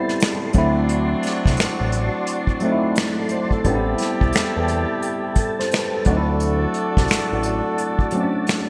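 An introspective, sultry neo-soul R&B excerpt at 87 BPM opens on a worn, slightly out-of-tune tine electric piano drenched in lush chorus, a smooth tonewheel organ holding chords through chorus vibrato and a slow rotary speaker, and loose jazz-style horn stabs with light vibrato and octave doubling, over Am9 and D7 chords with a swung 16th-note feel. An airy acoustic drum kit played with bundle sticks, with finger snaps, hi-hat, a punchy kick and a medium-tuned snare under gated reverb, sits up front, while a fat sawtooth-and-square analog bass with a moving notch comes in at 0.6 seconds and drops out at 7.6 seconds. The bright 1980s-style digital production sets the mix in a moderate plate reverb.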